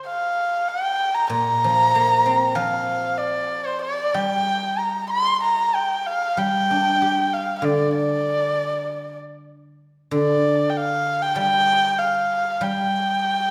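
Wistful and graceful, this Chinese traditional piece for chamber ensemble moves at a steady 96 BPM in a straight 4/4, set in the G yu mode and cut from a longer work. A single bowed erhu carries the melody from 0.1 s, sitting up front with a close, intimate presence, a soft attack, an airy bow sound, vibrato and sliding portamento between notes. The guzheng joins at 1.3 s as accompaniment, played with fingerpicks in a lower register, its mellow, silvery strings ringing out beneath the erhu line. The two instruments share the foreground, with the erhu the more prominent of the pair. A recital hall reverb of about 1.4 s surrounds them with the resonance of a church or concert hall, lending the whole passage a poised, lingering glow.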